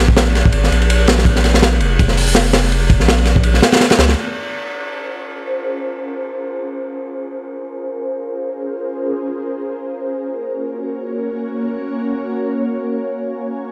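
A crunchy breakbeat drum kit in free time drives this frenetic, raw drum and bass and jungle cut in Bb minor, its gritty, saturated hits with a punchy kick, high-tuned snare and dark cymbals sitting up front over a deep, thick saturated sub bass until both stop at 4.2 seconds. From 4.9 seconds an ethereal, airy pad takes over with detuned, mellow sustained chords, washed in ensemble chorus, built-in reverb and phaser while a filter sweep moves across it. The harmony moves from Fsus4 to Bbm9 and settles on Gb/Bb at 10.0 seconds, and this fragment is cut from a longer piece.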